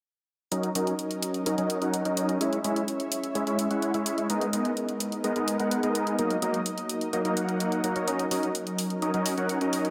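This excerpt of festival progressive house opens at 0.5 seconds with a big supersaw lead playing a riff up front, a lush unison pad holding sustained chords in the background, and an electronic hi-hat, all running until 9.9 seconds. The mood is powerful and anthemic, moving at 127 BPM in a straight 4/4 over chords of F#6, C#m, G#madd9 and back to F#6. The lead sounds huge, euphoric and airy, a detuned sawtooth stack with a noise layer, fast attack and compressed brightness, colored by cassette tape, a low-pass filter and delay. Beneath it, the pad is thick and vintage in character, its detuned saws warbling through chorus with a slow attack and long release. The layered, produced hi-hat keeps time, and a huge ambient reverb with a 4.1-second decay lends the whole mix a vast sense of space.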